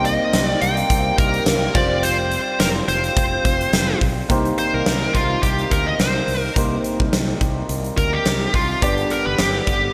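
A distorted, high-gain lead guitar opens this moody, nostalgic 1980s-style pop fragment, picked and bright at the front of the mix, with a baby grand piano, pedal harmonium and fretless electric bass sounding from the start. The huge arena drum kit arrives at 0.1 seconds, its punchy kick, fat snare, bright cymbals, hi-hat and tambourine drenched in gated reverb and placed up front, with a lightly swung sixteenth-note feel in 4/4. Behind them the piano rings open with long sustain and a subtle chorus, while the reedy, breathing harmonium holds mellow sustained chords in the background. The fretless bass sits underneath with a warm, direct and amped tone. At 4.3 seconds the guitar moves into a solo over chords shifting from Cm7 and Fsus2 back to Cm7, resolving to G near the end. A lush hall reverb and bright digital production give the whole a spacious period sheen, and the passage is cut from a longer piece.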